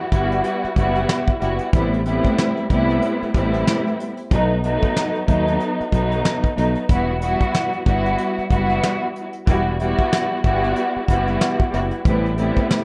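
A lush, bowed string section with vibrato and portamento sits up front, colored by cassette tape, high- and low-pass filtering and plate reverb, over a round, dark fingered electric bass and a soft brush drum kit with a fat snare and punchy kick, in this dark, moody boom-bap hip-hop cut at 93 BPM with a 16th-note swing, moving through Emadd9, Am7 and B7 in E harmonic minor within a rough home-demo mix.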